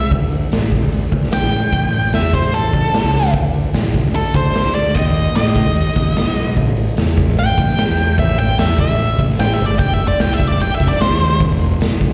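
Heard as a live gig through the venue's PA, this heavy, smoky blues rock power trio and southern rock piece, cut from a longer piece, moves at 149 BPM in A minor: a dark octave-fuzz lead guitar with slapback and tape echo carries a solo until 11.4 seconds, an overdriven fingered electric bass sits up front, and a gritty garage drum kit with a tight kick and rolled-off top drives the hi-hat and snare.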